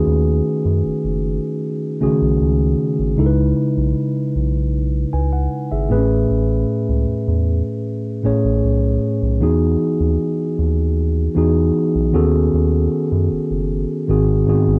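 A mellow tine electric piano and a round, deep analog bass open together at a relaxed 77 BPM in 4/4, setting a late-night, sensual contemporary R&B mood that carries through the full 14.8 seconds of this fragment of a longer piece. The clean electric piano, colored by cassette tape and heard as if through built-in speakers, sits up front with chords moving from B13 through C#m9, Amaj7, Emaj7 and B13/D# before settling on G#7 at 14.1 seconds. Beneath it the dark, slightly nasal bass has a fast attack and sustained notes, and the dry, intimate home-cassette sound keeps both parts close.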